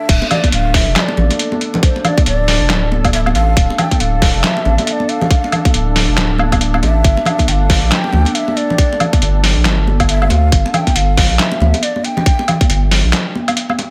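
A breathy, hollow shakuhachi melody with dub echo floats over a dark, detuned ambient pad from the start of this brooding, heavy deep dubstep excerpt in D minor at 138 BPM with a half-time swung feel, as a thick saturated sub bass, a tight up-front electronic kick and an overdriven, muffled sampler-style kit of snare, hi-hat, handclaps, woodblock and crash drive the drop from 0.1 seconds, joined by bright hard-hand congas at 0.2 seconds, moving from Dm to G5 at 7.0 seconds before a short break at 13.1 seconds.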